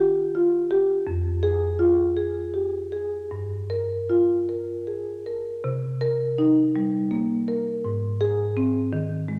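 Contemporary classical music for solo marimba, this brief flowing and hypnotic fragment of a longer piece unfolds in a rubato three-beat lilt, the soft-mallet marimba sounding woody, round and mellow up front in a wet recital-hall reverb as it drifts through lush added-ninth and seventh chords before settling on Ab at 7.8 seconds.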